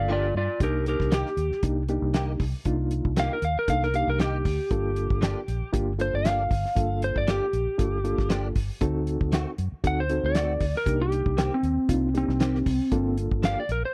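A dry, close 1970s-style studio sound frames this brooding, mournful soul blues fragment, cut from a longer piece and built on a straight-eighth feel. A bright, slightly broken-up slide guitar carries the melody up front, over a round, foam-muted fingered bass and a cloth-damped kit with a fat snare, tight kick and rolled-off top that enters at 0.6 seconds. A reedy, worn electric piano, slightly out of tune and lightly overdriven with fast tremolo, fills in the chords while a clean, direct-recorded electric guitar adds compressed, picked stabs with ensemble chorus, moving through a minor progression that reaches a D7b9 at 8.8 seconds.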